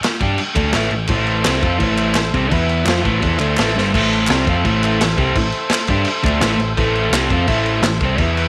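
A crunchy, double-tracked overdriven guitar riff opens this menacing garage rock excerpt at 170 BPM in A minor, alongside a round hollow-body picked bass, a saturated breakbeat kit with dark cymbals and a punchy kick, and crisp handclaps in the background, before a mellow vintage combo organ enters at 1.1 seconds with sustained chords and light vibrato, the gritty piece moving from Am to E5 and back ahead of a drum fill at 3.8 seconds, all in a small, lightly reverberant room.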